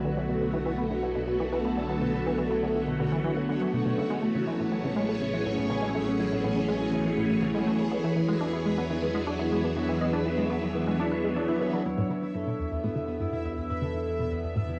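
Swirling, phased string-machine chords float through this hypnotic, cosmic piece of sequencer-driven ambient space music at 122 BPM, bright and up front over a mellow, warbling analog drone bass, while a tight, detuned sawtooth sequencer riff with vintage 12-bit grit drives along, a fingerpicked concert harp rings through delay in the background, and a bubbling, resonant stepped-filter texture fades in until 11.9 seconds, when a filter sweep hits the synth arpeggio sound and the chords move from Bm7, Amaj7 and E7 to Em7, all inside a small, wet room on a cassette home recording.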